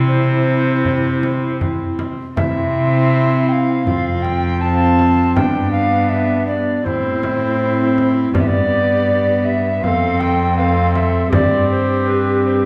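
A straight 4/4 pulse carries this festive, courtly renaissance-style consort dance, cut from a longer piece, where an airy, chiffy tenor recorder sings the melody up front over a second, pure-toned tenor recorder, a very quiet thumb-plucked concert harp, a nasal, reedy gut-string viola and a rich, bowed period cello, while a small, bright frame drum ticks in the background from 0.9 s, all set back in a wet recital hall as the chords move from C through F, G and Am to a closing Gsus4.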